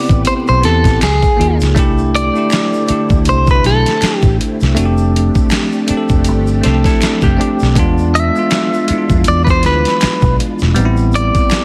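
A clean, picked electric guitar sings the melody with a warbly pitch drift and slapback echo over a bell-like tine electric piano and a silky, very quiet string machine shaded by phaser and ensemble chorus, in a smooth, swung neo-soul R&B groove that moves from Am9 through Db69, C69 and F69 to E7b9. A round, foam-muted fingered electric bass holds the low end beneath a gritty, pitched-down boom bap kit with a thumpy kick, snare, hi-hat and finger snaps that sits up front, while a distant tube shaker and finger snaps add faint texture. A dark, hollow-body archtop guitar slips in a brief second line from 6.6 s to 7.7 s, all under light reverb, vinyl crackle and a dense, heavily limited master in this short cut from a longer piece.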